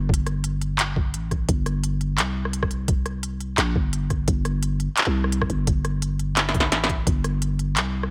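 A growling, buzzy 808-style bass opens this dark, cinematic half-time drum and bass excerpt, quickly joined by a gritty, overdriven, pitched-down electronic kick and an up-front industrial kit of clanging snare, smooth hi-hats, handclaps and rim clicks, all set in a digital ambience, with a drum fill from 6.4 to 7.1 seconds, after which the kick drops out and the bass and kit carry on to the end.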